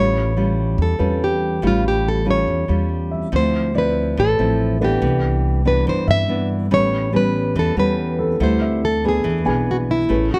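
A dark, warm production with light reverb frames this romantic, breezy bossa nova at 142 BPM, cut from a longer piece and moving through chords such as A7b13, Dm9 and Cmaj9. Up front, a fingerpicked nylon-string guitar with fresh strings carries the melody while a second, thumb-plucked classical guitar accompanies, over a woody pizzicato upright bass on steel strings. From 1.0 s a grand piano adds intimate, natural accompaniment in the background, with its action noise audible.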